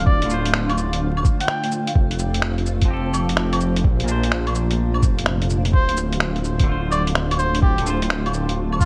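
Melancholic and wistful, this swung future garage excerpt pairs a soft, veiled cup-muted jazz trumpet, which plays briefly at the start and returns at 5.7 seconds through digital delay, with a clean semi-hollow electric guitar roughened by 12-bit sampler grit and sidechain pumping, a blurred, evolving granular cloud pad in the background, a deep, rumbling detuned saw bass up front, and a thumpy, muffled, pitched-down kick with a lo-fi sampler kit of cabasa, claves, finger snaps and hi-hat, all set in a brilliant 1980s-style digital sound with vinyl crackle over Dm7, Fadd9 and Bbadd9 chords.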